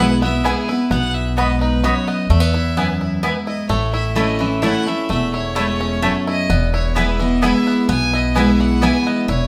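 A clear, nasal fiddle with light vibrato carries the melody high above this joyful, rustic bluegrass tune, played by a single bowed player with an earthy edge. A bright, twangy banjo played with fingerpicks shares the melody lower down, its percussive attack cutting through. Up front, a full-bodied dreadnought acoustic guitar picks out the accompaniment, while a thumpy, woody pizzicato upright bass anchors the low end. A double-strung mandolin adds picked stabs and drops out at 8.9 seconds, just before the close. At 129 BPM in 3/4 and E major, the chords move from E to B and back before shifting to A at 3.7 seconds, and the band sounds like it is playing live in one large studio room with a generous reverb, in a short cut from a longer piece.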